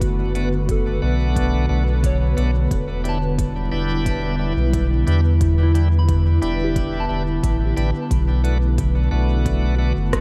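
Meditative and spacious, this ambient dub passage in straight 4/4 rests on an up-front, round sine sub bass and a breathy, detuned pad of sustained chords moving from Bm7 to Em7 and back. A deep, layered electronic kick sits in the background beside crisp hi-hats and rim clicks trailing dub echo, while a soft FM bell plays arpeggios through chorus, phaser and tape echo. A bright, shouting tonewheel organ, lightly overdriven through a slow rotary speaker and dub echo, adds stabs from 0.3 to 9.9 seconds over light digital ambience and vinyl crackle in this fragment of a longer piece.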